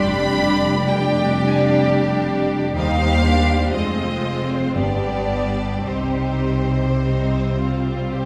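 In a slow, rubato 3/4 at 52-65 BPM, this elegiac C minor fragment of a romantic string-orchestra movement moves from G7 over F through Fm and G to rest on Cm around 5.8 s. A lush, focused violin section carries the melody high above a clear second violin line, while a rich, up-front viola section fills in the accompaniment. A smooth, even cello section sits in the background beside a clear double bass section holding the bass, with every section bowed with vibrato and heard from further back in a wet recital hall.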